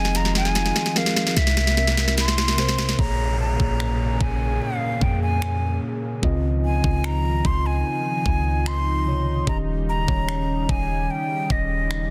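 A breathy, hollow jazz flute carries the melody over a mellow tine electric piano, a lush detuned pad in the background with chorus and sidechain pumping, a deep, boomy 808-style bass and an up-front trap kit of knocking kick, sharp soft-clipped snare, bright hi-hats and finger snaps in this moody, sensual contemporary R&B excerpt at 74 BPM, which opens with a drum fill, moves from Fm7 into a break at 3.0 seconds where an electronic downlifter sounds until 9.5 seconds, and sits in light digital reverb under a dense, heavily limited modern master.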